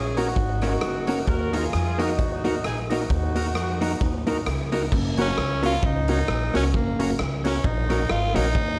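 A raspy, up-front tenor saxophone takes a solo from 5.2 seconds in this upbeat, joyful ska excerpt at 132 BPM in F# major, following a warm horn section that carries the melody until 4.4 seconds, both with slapback echo. Underneath, a woody, thumpy pizzicato upright bass and a punchy, saturated garage drum kit in a bright stone room drive the swung groove, with crash, hi-hat, kick and rim click. A dark, clean hollow-body jazz guitar comps with slapback echo, while an overdriven tonewheel organ adds thick stabs through a slow rotary speaker in the background, all under light reverb.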